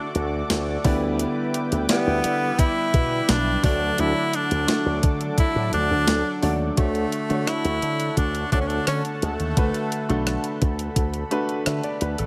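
Glossy and nostalgic, this 1980s-style pop cut at 86 BPM in D major pairs a clear, close-miked tenor saxophone melody with vibrato and digital delay, which ends at 10.2 seconds, with smooth vintage grand piano, an evolving chorused sawtooth pad, fat detuned synth brass stabs that drop out at 6.7 seconds, a thumpy overdriven 12-bit drum machine with snare, rim click and tambourine, and a growly, punchy slap bass through an envelope filter, all in light reverb.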